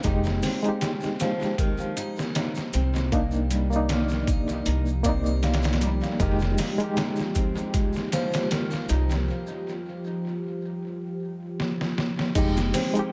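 Trip hop at 78 BPM in F dorian, hypnotic and brooding, this excerpt sets a muffled, overdriven sampler-style drum kit with a thumpy kick up front beside a woody pizzicato upright bass, while a reedy electric piano with fast tremolo and tape echo accompanies and a dark fingerpicked flamenco guitar plays arpeggios, a deep, detuned ambient pad with chorus joins at 2.1 seconds on sustained chords, faint band-limited maracas and triangle sit in the background, and a break from 9.3 seconds over Fsus2 ends in a drum fill at 11.6 seconds, all in an echo-heavy small-room mix.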